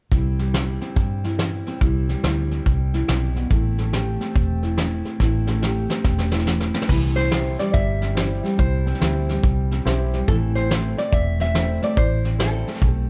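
A metallic, nasal lap resonator guitar played with fingerpicks and slide takes the melody at 6.9 seconds in this nostalgic, down-home honky-tonk and classic country excerpt, over a swung 4/4 bed of full-bodied picked steel-string acoustic guitar, round, foam-muted electric bass, a brushed drum kit with a fat snare and dark cymbals that plays a fill before the resonator enters, and a grand piano sitting in the background, all under light reverb and a dark, warm production.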